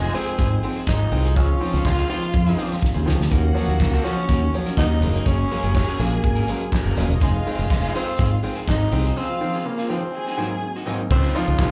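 Celebratory and danceable, this straight 4/4 disco cut at 123 BPM in Db major rides a punchy, round fingered electric bass and an up-front soul drum kit with a tight kick, dark cymbals, hi-hat, snare, crash and handclaps, and it sounds like a live gig heard through the venue's PA. A growling, raspy tenor saxophone carries the melody with breathy subtone and scooped notes, while a lush, bowed studio string section plays a second line in the background, joined by a slightly broken-up picked electric guitar, a clear baby grand piano and a very quiet, mellow French horn section holding sustained chords. The saxophone, strings, guitar and piano carry a slapback echo, a drum fill lands at 2.8 seconds, and a break runs from 9.2 seconds before the passage resolves on a Dbmaj9 chord.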